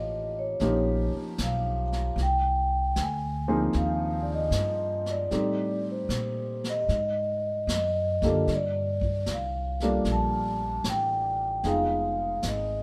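A vibraphone played with soft mallets carries the melody up front, its mellow, dark ringing tone kept smooth with the motor off, in this romantic, late-night jazz ballad at 76 BPM in 4/4 with a gentle swing on the eighth notes. An intimate upright piano accompanies close by, woody and natural, with its action noise audible, while a thumpy pizzicato upright bass on gut strings sits equally near. A brushed jazz kit joins at 0.6 seconds, heard distant and roomy in a studio space, with a medium-tuned snare, hi-hat and a punchy kick. The harmony drifts through rich chords such as Eb7, Ab69, Am7b5 and Gm9 before settling on Fm7b5. Light reverb adds a soft glow to this 12.8-second passage, which is cut from a longer piece.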